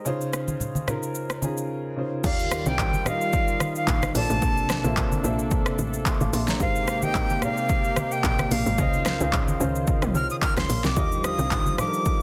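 Warm and relaxed, this amapiano passage cut from a longer piece opens on a dark, worn baby grand piano with audible action noise and long sustain, joined almost at once by a punchy, overdriven deep house drum kit with a fat snare, handclaps, rim clicks, shaker, hi-hat, toms and a crash cymbal sitting up front. Low-tuned, damped congas with a thick skin add soft hand percussion in the background from 0.5 seconds. At 2.2 seconds the drop arrives, bringing in a tight, percussive log drum bass with an FM tone, a noise layer and a fast, decaying attack. A breathy, bright jazz flute carries the melody up front at the same moment, its crisp chiff and vibrato trailed by tape echo. Beneath it, a smooth, vintage analog pad of detuned sawtooth and wave-folded sine tones holds soft-attack chords that warble through chorus, drifting over lush major ninth harmony.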